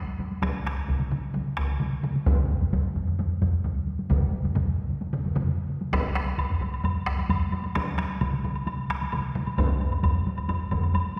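Layered taiko drums open at 0.2 s in this powerful, ceremonial Japanese traditional ensemble piece, a short cut from a longer work moving at a straight 131 BPM in 4/4. Most of the drums, struck with heavy or hard sticks, sit close and dry near the front, while one sounds distant, as if in a large room, and a woody woodblock joins at 5.9 s. The whole group is heard from further back in a reverberant concert hall.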